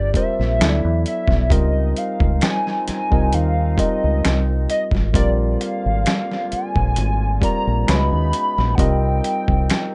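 R&B and neo-soul at a slow 66 BPM with a lightly swung sixteenth feel, this introspective, soulful fragment sets a hollow, woody square lead with chorus and vibrato over a worn, slightly out-of-tune tine electric piano, distant dark woodwinds holding soft sustained chords in the background, a round, deep dub fingered bass up front, and a gritty, overdriven sampler-style kit of thumpy kick, snare, hi-hat and finger snaps, all moving through a rootless Abmaj9 and on into Dbmaj9, Bb7 and Dbm9 colours in a rough home-demo mix with light reverb.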